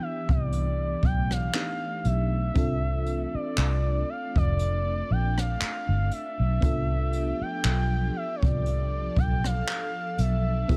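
A gliding lead, a tremolo-laden FM electric piano and an ethereal, airy pad open this dreamy, tender contemporary R&B excerpt at a slow 59 BPM in 4/4, with a gentle sixteenth-note swing. The smooth triangle-and-sine lead carries the melody with portamento and vibrato, coloured by chorus and digital delay, while the full-bodied electric piano plays dark, decaying accompaniment and the warbling, detuned pad sustains chords in the background through ensemble chorus, its own reverb and sidechain pumping. At 0.3 seconds a foam-muted fingered electric bass enters, round and punchy up front, alongside a jazz kit played with brushes, its boomy kick, hi-hat, rim click and handclaps sitting close in a dry studio room. The harmony moves from Cmaj7 to a rootless Bbmaj9 at 2.6 seconds and settles on G7 at 6.6 seconds. The mix stays intimate and dry overall, the bass and drums leading in level beneath the floating keys and lead.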